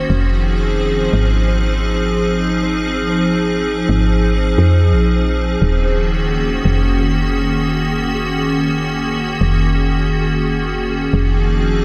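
Glitchy and eerie, this IDM excerpt moves at 87 BPM with a light 16th-note swing in Eb dorian, where an icy, crystalline glass pad holds sustained chords up front from Fm7 to Ebm7 over a woody, round FM bass, while a pulsing, tempo-synced gated texture sits in the background, all within a dreamy mix soaked in a huge ambient reverb.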